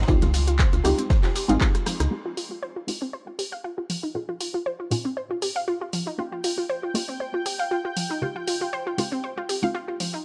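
Hypnotic, moody deep house at 118 BPM with a light swing, where a woody FM bass, a punchy electronic kick, the ride and snare of a crunchy breakbeat kit, congas, maracas and a silky string pad fall away within the first 2.1 seconds, around a drum fill. What remains is a bright, detuned analog pluck arpeggio under a filter sweep, phaser-tinged dub chord stabs with tape echo and sidechain pumping, and an analog drum machine's handclaps, hi-hat and rim click. The string pad returns at 6.2 seconds, as the chords move through Dbmaj9#11, Fm7, Bbm11, Eb9 and back to Dbmaj9#11 in a dry, gritty hardware sound.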